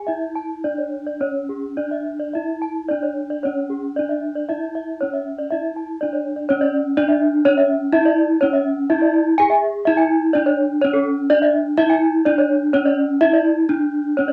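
This short excerpt sounds like a home cassette recording made in a small, snug room, with a moderate booth-like ambience around two gamelan-type bronze metallophones placed up front. The mood is brilliant and shimmering, moving at a straight 4/4 pulse of 106-125 BPM, tuned to A4 = 441 Hz. One metallophone carries the melody in its lower register, struck with a horn mallet; its tone is metallic, ringing and warm, with a boxy character. The second plays arpeggios higher up with a wooden mallet, its bronze sound passed through a cassette-tape coloring. Both instruments use paired tuning, so their notes throb with shimmering beats. A new section begins at 6.5 seconds, and a brief break from 13.5 to 14.2 seconds comes just before the cut from the longer piece.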